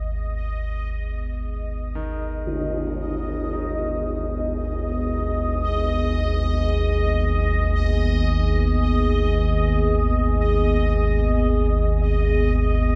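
A deep, rumbling drone and a bubbling, resonant texture open this vast, ominous dark ambient excerpt from the start. The drone sits up front, detuned and dark, while the texture fades in high above with random filter steps, chorus and shimmer reverb. At 1.2 seconds a deep, moody pad of sustained chords settles between them, its detuned sawtooth unison and sub octave thickened by chorus and shimmer. A brilliant grand piano fades in at 2.0 seconds with arpeggios in the background, trailed by delay. A close, dry tam-tam strikes briefly at 2.5 seconds behind the other parts. Set in free time around G# minor, the whole excerpt floats in a cavernous cathedral reverb with a long decay.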